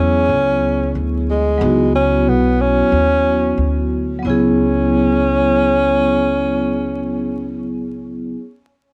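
Swung sixteenths in 4/4 drive this mellow, cool hip hop fragment, cut from a longer piece and resting on a C#m7 chord. A breathy tenor saxophone, up front and jazz-inflected, carries the melody with subtone, vibrato and scooped notes until 7.7 seconds. Beside it, a vibraphone played with soft mallets rings out an airy, metallic accompaniment with slow motor vibrato, both parts colored by cassette tape, while a woody, thumpy pizzicato upright bass sits dark beneath them, all within a home-cassette sound carrying vinyl crackle and a moderate booth ambience.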